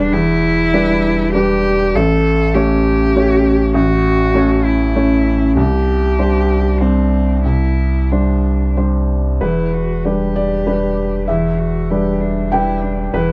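A felt-muted upright piano, a clear bowed cello and a deep sub bass all sound together from the opening moment of this 13.3-second excerpt, cut from a longer neoclassical piece for piano and strings in E minor. The music moves at 97 BPM in 3/4 with a rubato feel, and its mood is melancholic and reflective. The upright piano carries the accompaniment up front, its tone soft, intimate and vintage, with the thin felt muting giving it a hushed, mellow quality across a span from A1 to G5. A single cellist plays the second line close to the listener, smooth and even with vibrato, while the sub bass sits beneath as a round, sine-like foundation with a fast attack and sustained notes. The harmony moves from Em7 to A and Csus2 before returning to Em7 at 9.4 seconds, where a new section begins, all set in light reverb within a dark production.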